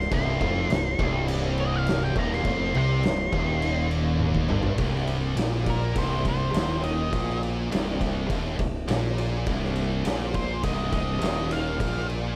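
A light studio reverb surrounds this short stoner and doom metal cut, where an oversized low-tuned drum kit sits up front with a fat snare, punchy kick and a saturated, gritty character in a bright stone room. At 103 BPM in a straight 4/4, the hypnotic, sludgy piece rests on C minor. Two thick fuzz guitars, one warm and one dark, churn a low riff from the background, joined by a bright, scooped, double-tracked high-gain guitar playing a riff in the same low range. A growling fingered bass with overdrive also sits up front, giving the low end a bright, amped bite. Above them, an octave-fuzz lead guitar with analog delay carries a dark, distorted melody, soloing through the opening section, and a drum fill at 4.2 seconds leads into a new section at 4.8 seconds, with the full band playing on until the cut ends around 12.4 seconds.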